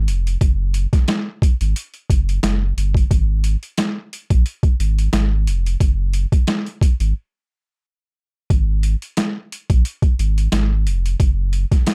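A deep, round sine sub bass opens this reflective, moody boom-bap hip-hop excerpt, joined almost at once by a gritty, pitched-down, overdriven sampler-style drum kit with a thumpy kick, high-tuned snare and hi-hat, both parts sitting up front in a dry mix with a break from 7.2 to 8.5 seconds.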